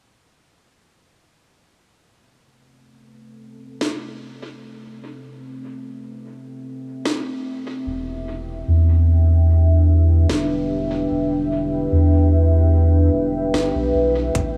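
Ambient dub at 74 BPM in A minor with a meditative mood, this excerpt centers on a moody, warbling vintage sawtooth pad with chorus and a filter sweep, holding sustained chords that move from Am9 to Em7 at 7.9 s, where a round, soft sub bass enters up front, while an overdriven electronic kit of woody snare and crisp hi-hats with dub echo plays from 3.8 s and a tight, overdriven kick lands briefly at 14.4 s, the whole mix soaked in huge, dreamy reverb.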